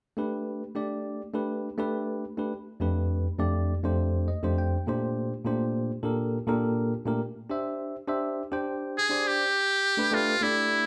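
Slick and soaring, this straight-feel jazz fragment opens at 0.2 seconds with a clean, bell-like tine electric piano accompanying up front over Gadd9, Fadd9, Bb6 and D9sus4 chords, adding a brief fill at 4.0 seconds. At 9.0 seconds a close-miked trumpet with a metal mute enters as the soloist, brilliant and buzzy, forceful and punchy, with light vibrato and scooped notes. The band plays live together in one room, set in a moderate, large-studio reverb.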